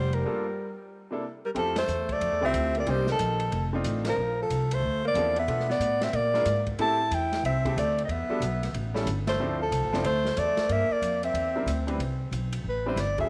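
A breathy, intimate soprano saxophone carries the melody up front in this swinging, sophisticated snippet of small-group jazz in F major at 184 BPM, joined by a clear alto saxophone's second line with tape echo until 11.8 seconds, over woody pizzicato upright bass, a bright upright piano, and a dark, smooth drum kit, with a break from 0.2 seconds and band accents before the soprano takes a short solo at 12.0 seconds in moderate plate reverb.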